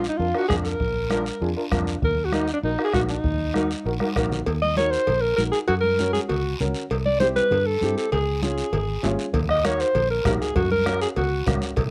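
A brisk, straight 4/4 cumbia groove at 197 BPM drives this short cut from a longer Latin piece. It is carried by a raspy, close guiro, high-tuned congas played with soft hands in the background, and a distant, soft-beater bombo that drops out at 4.3 seconds and returns at 9.3 seconds. A short drum fill at 4.0 seconds leads into the second section, where compressed, saturated cowbell and timbales with a ringing metal-shell tone join the pulse. Underneath, a fingered electric bass plays dark, round, foam-muted lines, while a mellow, woody upright piano supplies accompaniment. Out front, a breathy alto saxophone with light vibrato and a smooth top carries the passionate melody in a pop style, with both saxophone and piano colored by cassette tape. The harmony shifts from Eb harmonic minor into Eb dorian, and the light reverb of the home cassette recording gives the driving performance a homespun intimacy.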